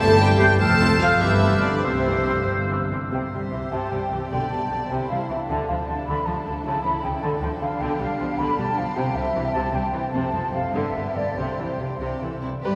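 Bathed in a wet cathedral reverb, this graceful, spirited classical-period orchestral movement in a rubato 6/8 sets a rich, close violin section on the melody over a darker, woody violin line, expressive violas, warm cellos with portamento and focused double basses, while a pure flute section carries a second line until 12.0 s, a mellow clarinet and a distant oboe add brief lines of their own until 2.9 s, and a very quiet, tight French horn section sustains chords at the opening and again from 12.6 s.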